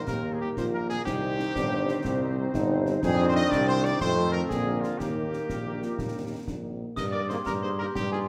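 A tight trumpet section with light vibrato and a smooth top carries the melody of this proud, festive military-style march for wind band in 6/8, over a warm, roomy tuba bass placed up front, sustained trombone chords, and a dark, distant French horn section that is barely audible. A mellow euphonium and a softer woodwind section add second lines in the background, while concert snare, bass drum and clash cymbals with a dark cymbal sound play from a small room. The euphonium drops out at 7.0 s, where a bell-like, ringing glockenspiel struck with hard plastic mallets enters with a metallic, vintage, band-limited tone, all within a wet recital hall reverb in this short cut from a longer piece.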